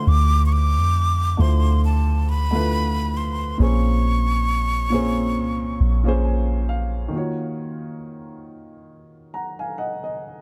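Sensual and moody, this contemporary R&B passage moves with a lightly swung 16th-note feel in 4/4. A breathy jazz flute carries the melody between A5 and D6, its metallic, expressive tone shaped by soft attacks, vibrato and lifted highs. Beneath it, a dark baby grand piano sits up front with a mellow, natural sound and short sustain, while a soft 808-style bass adds deep, round, sine-like notes that strike fast and then decay. The harmony moves from Dm9 to Bbm9, and the piano plays a fill from 5.8 seconds that leads into Ebm9 at 7.1 seconds, with the flute falling away at 6.2 seconds along the way. After the bass stops at 7.1 seconds, the piano continues alone in a small room ambience until this fragment of a longer piece is cut off.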